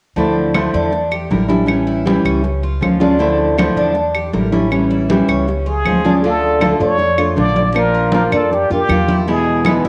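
Soaked in moderate spring reverb and the worn character of a home cassette recording, this danceable, nostalgic excerpt of Cuban son and guajira at 158 BPM in D harmonic minor sets an up-front, fingerpicked nylon-string guitar with audible finger squeak over a metallic, double-strung tres playing arpeggios, a growly pizzicato upright bass, and bright, damped congas and woody claves in the background, and at 5.7 seconds a plunger-muted trumpet joins them with a scooped, wah-wah jazz solo full of vibrato.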